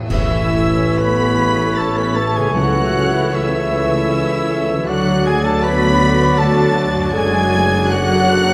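A very quiet, ringing concert harp opens this tender, rubato excerpt of a slow romantic orchestral movement in 3/4. A moment later the full orchestra joins: a lush, vibrato-rich violin section sings the high melody over a background second violin line, airy silver flute, bright oboe and distant clarinet, while a mellow bassoon and expressive violas fill the middle, and dark French horns and a faint trombone section hold sustained chords beneath a warm trumpet's stabs. Woody double basses, rich cellos and tuba carry the bass in a wet scoring-stage reverb, clash cymbals and concert bass drum mark an accent that ends by 1.7 seconds, and hard-mallet timpani sound from 2.5 to 3.7 seconds.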